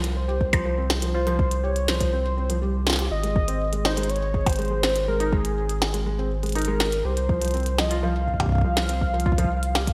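A straight 4/4 pulse at 122 BPM drives this glitchy, intricate IDM excerpt, where a soft, tape-tinged electronic kick enters at 0.4 seconds beneath an up-front kit of clicky hats, a tiny gated-reverb snare and percussion blips, while a round, deep analog bass with tube saturation anchors the Csus4 to Ab to Csus4 harmony, a felt-muted upright piano with audible action noise spins intimate arpeggios through digital delay, and a velvety, detuned synth lead with chorus, vibrato and delay sings on top, all set in a lush hall ambience with a bright 1980s-style digital sheen.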